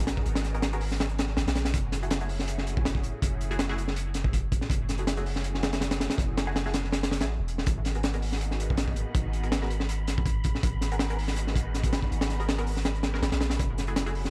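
Drum and bass in a raw, nostalgic jungle vein, this dark, dry cut from a longer piece rides a crunchy, gritty breakbeat kit with a high-tuned snare and punchy kick up front over a deep, sine-toned 808-style bass with tube saturation, while a silky string machine with phaser and ensemble chorus and muted, detuned dub chord stabs with lo-fi sampler grit and dub echo drift in the background between G#m9 and F#m9, joined at 8.6 seconds by an airy, breathy wind-like noise texture.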